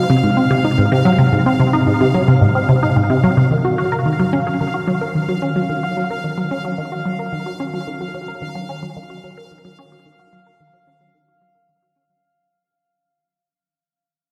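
A juicy, squelchy resonant blip pluck leads this ambient, sequencer-driven space music excerpt at 110 BPM, its detuned sawtooth riff running from Ab2 to Bb4 up front through chorus, phaser and tape echo. Behind it, a bright, bubbling stepped-filter texture holds a sustained F5 with slow attack and long release, while a cathedral reverb of 6.0 seconds places both parts in a vast, echoing space. The mood is expansive and cosmic, settling onto a rootless Ebmadd9 at 3.5 seconds as the arpeggio fades out through to 12.2 seconds.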